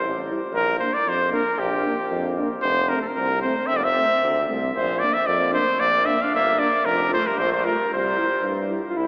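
Heard through a thin, AM-radio sound and drenched in the long, wet reverb of a church or concert hall, this short cut from a longer piece is exuberant, virtuosic Balkan brass folk at 114 BPM in a straight 2/4, moving through C, Bb and F. A warm, classical-style trumpet carries the melody up front over a clear, soft-attacked tuba bass, while a mellow alto saxophone with light vibrato and a smooth top sings a second line in the background, briefly dropping out before returning at 3.7 seconds. Behind them, euphonium and a soft-attacked, vintage-toned trombone, both with light vibrato, fill out the accompaniment.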